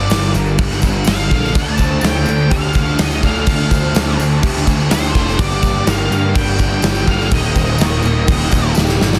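A blissful, hazy shoegaze and dream pop excerpt opens with a dark octave-fuzz lead guitar melody over shimmering, fingerpicked twelve-string acoustic arpeggios with finger squeak, a faint, double-tracked crunchy overdriven guitar, a thick fuzz guitar riff in the background and a bright, punchy fuzz bass. A gated 80s drum kit sits up front with bright cymbals and a punchy kick, joined by a very quiet, jingly tambourine, while a compressed overdriven electric guitar with reverse reverb enters at 1.5 seconds. The chords move from Gm7 to Dm7 and back before settling on Eb, and a drum fill closes the passage at 8.8 seconds in a dense, heavily limited mix.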